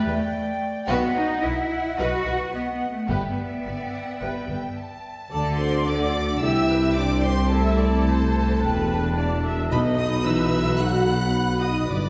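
In straight 4/4 at 109 BPM, this swashbuckling, determined heroic adventure cue, cut from a longer piece, sets an intimate chamber violin section carrying the melody with light vibrato and a soft sul tasto touch, over an airy, hollow flute group, a distant clarinet and a lush symphonic violin section playing second lines while bowed violas fill in the accompaniment. Rich cellos and a clear, up-front double bass section anchor the low end, dark French horns join with sustained chords at 0.9 seconds, and a mellow tuba deepens the bass from 5.3 seconds as the harmony moves from Em7 and B toward D, C and back. The whole ensemble sits further back in a scoring stage, with a 1.6-second reverb lending a roomy, cinematic sweep.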